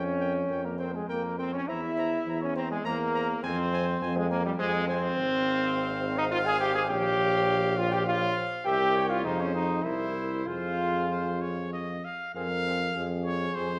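Heard through a wet recital hall reverb, this short cut from a longer classical brass quintet piece sounds grave and solemn, moving at 102 BPM in 3/4 with a rubato feel in F minor. A clear trumpet carries the melody while a warm flugelhorn sits in the background with a second line, both playing throughout. Up front, a bright trombone with light vibrato and a tuba with vibrato anchor the accompaniment and bass, each sounding distant and roomy despite their forward placement. A mellow French horn, also with light vibrato, adds accompaniment from further back in the hall. The harmony leans on dark, searching chords such as Gm7b5 and C7 before settling repeatedly onto F minor, with a new statement of the opening material beginning at 12.4 seconds.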